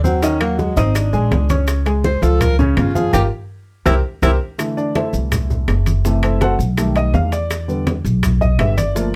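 A straight 4/4 groove at 165 BPM drives this sunny, sophisticated Afro-Cuban jazz excerpt, with quiet, tight bongos, bright background congas, grainy maracas, ringing metal-shell timbales and woody claves over a thumpy, gut-strung pizzicato upright bass sitting up front. A breathy, subtone tenor saxophone with light vibrato and scooped notes solos until 4.3 s, with a band accent arriving at 3.1 s and a drum fill at 4.0 s, before the worn, present baby grand piano takes its own solo from 4.6 s as the harmony settles into C major. The close, dry recording keeps every part detailed and intimate.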